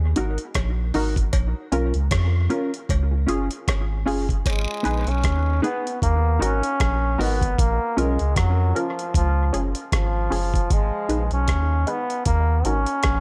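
Hypnotic and deep, this dub reggae excerpt rides a round, up-front sub bass and a gritty, tape-toned sampler-style drum kit with thumpy kick, hi-hat and rim click, while a dark, clean electric guitar with analog chorus and dub echo, a muted, phaser-washed chord stab, and a close cowbell and jawbone-type rattle fill the opening break until a brilliant, vintage trombone with light vibrato takes the melody at 4.5 seconds over dry, intimate sound.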